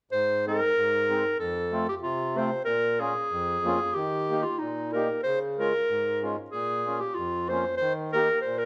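Bouncy and festive, this short cut from a longer alpine folk piece has the lilt of an alpine dance band, moving at 94 BPM in 2/4 with a gentle swing on the eighth notes. A clear clarinet carries the melody from 0.1 to 8.7 seconds, its soft attack and classical poise keeping the tune sitting up front in the mix. Beneath it, a reedy accordion supplies the accompaniment across the same span, its round, mellow tone pushed forward alongside the lead. The harmony stays in Ab major, moving through Ab, F, Bbm, Eb, Db, Bbm and back to Eb. The two players sound as if they are together in one room, with a generous studio reverb lending the performance a lively, open glow.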